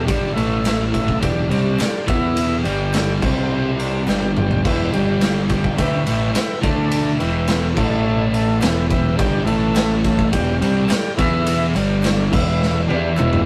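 Driven by a straight, punchy 4/4 beat from a raw, saturated drum kit with fills at 4.1 and 12.6 seconds, this gritty, swaggering garage rock excerpt pairs a dark, double-tracked fuzz guitar riff over power chords with a round, overdriven picked bass, buzzy combo organ chords with light vibrato, and very quiet crisp group handclaps, all captured in a rough rehearsal-room recording with tube saturation and a moderate booth ambience.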